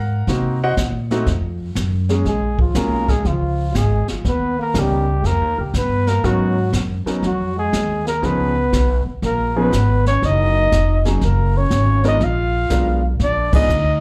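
Jazz in a small-group swing and bop style with a smoky, late-night mood, heard as a live club gig through the venue's PA with light reverb, and cut from a longer piece. A warm baby grand piano with slapback echo accompanies a woody, growly pizzicato upright bass that sits up front, and a brushed drum kit with dark cymbals, a high-tuned snare and a punchy kick joins at 0.3 seconds. At 2.3 seconds a dark, breathy trumpet takes the melody with vibrato and scooped notes alongside a present trombone second line, both carrying slapback echo, before a band accent at 13.4 seconds.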